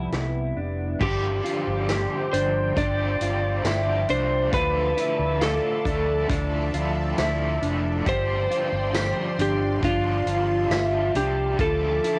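Cassette-tape softness and a small, close booth ambience give this hazy, ethereal dream pop excerpt its intimate home-recorded feel, moving at a slow 68 BPM in straight 4/4 over chords such as Cmaj7, G7sus4 and Dmadd9. Up front, a bright, slightly broken-up slide guitar carries the melody through tape echo. Beneath it sit a smooth, detuned sawtooth pad with chorus, clean, compressed arpeggios from a mellow electric guitar, and a growly, round fingered bass; a vintage drum kit with dark cymbals, a punchy kick and tambourine comes in at 0.1 s, and an overdriven guitar with tremolo and lush chorus joins at 1.0 s.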